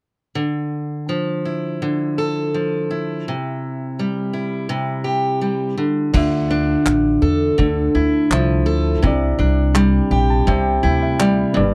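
A picked steel-string acoustic guitar opens this wistful, reflective acoustic pop excerpt at 0.4 seconds, sitting up front with a warm tone, an auditorium character and audible finger squeak as it moves through Dmadd9 and C in D minor at an unhurried 83 BPM in straight 4/4. At 6.1 seconds the arrangement fills out: a pizzicato upright bass arrives, woody and thumpy, while a loose indie drum kit sounds distant and roomy, with a punchy kick, handclaps and dark crash cymbals under a rolled-off top. A barky, reedy electric piano joins at the same point, bright and lightly overdriven as if through its own built-in speakers, over chords that return to Dmadd9 before settling on Cadd9. From 9.8 seconds the electric piano plays a fill that carries to the end of the passage. A light reverb gives the mix a gentle sense of space, and the passage itself is cut from a longer piece.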